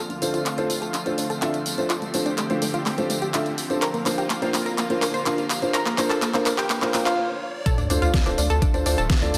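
Bathed in a lush hall reverb, this emotional, expansive progressive house fragment builds as a thick, warbling detuned pad, a bright, chorused analog pluck arpeggio under a filter sweep, mellow felt-muted upright piano stabs with audible action noise and a round analog bass in the background join an overdriven pop drum kit whose deep snare, handclaps and tambourine play a drum fill. A very quiet riser and sub drop enter at 4.4 seconds, then a brief stop at 7.2 seconds gives way to the drop at 7.7 seconds with a knocking electronic kick and an impact, while the pad, pluck, bass and piano pump against the sidechain.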